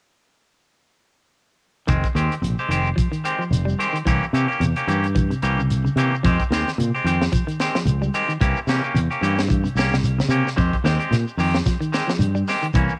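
A swung sixteenth-note groove in 4/4 drives this funky, defiant afrobeat excerpt, with a tight funk drum kit (high-tuned snare, tight kick and hi-hat, colored by cassette tape) and a grainy, mellow shekere all entering together at 1.9 seconds. Up front, a round, punchy fingered bass anchors the low end, while a bright, picked clean electric guitar throws out stabs bathed in spring reverb and a scooped, hollow-body semi-hollow guitar plays arpeggios in the background. The harmony alternates Fm9 and C7b9, and the whole thing has the dry, intimate character of a home cassette recording.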